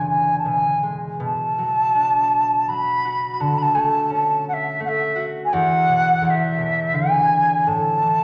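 An airy, woody flute sits up front with expressive vibrato and tongued notes in this wistful, nostalgic Celtic slow air at 84 BPM in a rubato, unevenly pulsed 3/4, while a bright, ringing fingerpicked concert harp accompanies softer and lower through chords moving from E7 to Bm7 and Dmaj7 before settling on A5, all bathed in a wet, large studio reverb and tuned to A4 = 438 Hz in this 8.2-second fragment of a longer piece.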